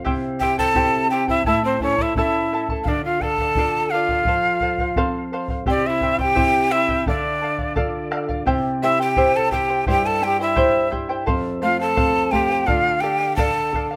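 A breathy, end-blown cane quena carries the melody up front from 0.4 s. It has a crisp, chiffy attack and expressive vibrato, set in plate reverb and tape echo. This earthy, melancholic passage of Andean folk moves at 86 BPM in a straight 2/4, with large cane pan pipes playing a second line beneath it, bright and reedy with a straight tone, soft attack and lifted highs. A shimmering charango, fingerpicked on double strings with some octave-doubled courses, and a dark, woody nylon-string guitar, thumb-plucked on old strings in a classical manner, sound from the very start, while a round bombo adds percussion in a live room. The harmony circles through C, A, Dm and F in the first section, then a second section from 8.5 s moves among C, F and Dm. A moderate small-room reverb gives the ensemble a close, intimate setting.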